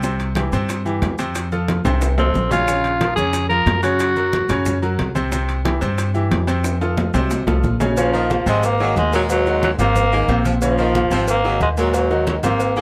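A lightly reverberant, driving salsa excerpt at 181 BPM in Bb minor, fiery in mood and cut from a longer piece. A bright, polished grand piano sits up front, with a woody pizzicato upright bass on steel strings, while a bed of percussion surrounds them: damped, low-tuned congas with a compressed, saturated edge; very quiet, round bongos and cowbell; ringing metal-shell timbales and agogo bells with a vintage, band-limited tone, entering at 0.2 seconds; and grainy, close maracas in the background. A breathy, raspy tenor saxophone takes the solo melody from 2.2 to 4.8 seconds and returns at 8.0 seconds, gritty and punchy up front. Drum fills mark 1.9 and 6.6 seconds, and the harmony moves through C, F, Bbm and Gb before the later passage cycles Bbm, Abadd9 and Ebm. In that later passage, a clear saxophone section with vibrato adds a second line beneath the soloist in the background.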